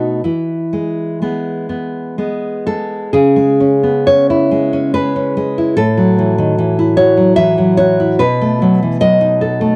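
In a rubato 3/4 that drifts between 61 and 77 BPM, this brief fragment of a romantic piece for solo classical guitar moves through E, C#m, F#m7/A and B7 with a nostalgic, warm mood. The fingerpicked nylon-string guitar sits up front with a deep, classical tone, ranging from A2 to E5, and finger squeaks are audible along the strings. Its home cassette recording carries a studio ambience, and a new section begins at 3.1 seconds.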